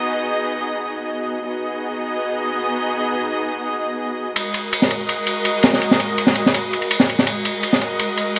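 A crunchy, saturated breakbeat kit with a high-tuned snare and shadowy ride cymbal bursts in at 4.4 seconds over veiled, con sordino string chords that have sustained with vibrato and a soft attack from the start, giving this frenetic, raw drum and bass and jungle fragment a gritty drive inside a moderate plate reverb and a dusting of vinyl crackle.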